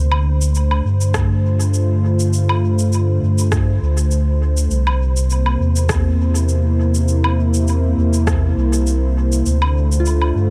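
Ambient dub at 101 BPM in 4/4 with a light sixteenth-note swing, set in D minor and tuned slightly flat of standard pitch, with a spacious, meditative mood. A mellow, detuned sawtooth pad with chorus holds sustained chords throughout, moving from Dm7 to C7 and back to Dm7 near the end. Underneath sits a deep, round sub bass, built from triangle and square waves and sitting up front with tube saturation, carrying most of the weight of the mix. Electronic woodblock, cabasa and rim click, tape-toned and sent through dub echo, tick through nearly the whole passage, while a layered, deep electronic kick enters at 1.1 seconds and drops out at 8.4 seconds. In the final half second a pure, warbling FM bell with chorus touches F4, and the dry, close sound of this short cut from a longer piece keeps the textures intimate.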